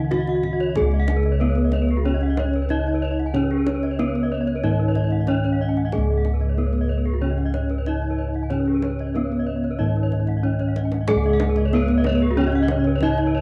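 Round, close-miked bossed gongs sit up front carrying the bass in this ceremonial, brilliant Balinese gamelan excerpt at 93 BPM in Db slendro, beneath a dark, smooth bronze metallophone melody struck with a horn mallet and shimmering from its paired tuning, a background metallophone accompaniment played with a wooden mallet, two bright, airy metallophones playing arpeggios, and a deep, band-limited kendang that adds a drum fill at 10.3 seconds, the whole piece captured as a home cassette recording with light reverb.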